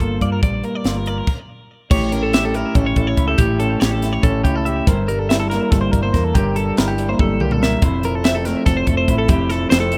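Wistful and restless, this math rock and midwest emo excerpt in 7/8 sets a slightly broken-up, twangy electric guitar through a small old amp with spring reverb up front, a bright twelve-string electric guitar spinning compressed arpeggios through phaser and digital delay, a round hollow-body short-scale bass, and a crisp fusion kit with a high-tuned snare and dark cymbals, all in a rough home demo mix with small room ambience, pausing at 1.3 seconds and breaking into a drum fill at 7.2 seconds as the chords move from Gm7 through A7 and C7/G to Fmaj7.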